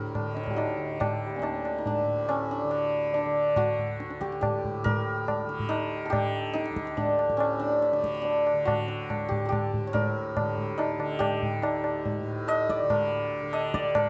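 Set in a straight 3/4 at 141 BPM, this serene, radiant fragment of Hindustani classical music places a hammered santur up front, its shimmering, ringing melody spanning G3 to Eb5, over a softly plucked, buzzing tanpura drone from D2 to D3. Low-tuned tabla with a short ring joins at 0.2 seconds, and the music moves into a new passage at 4.8 seconds. Close, detailed microphones and moderate studio reverb give the acoustic instruments a clear, intimate presence.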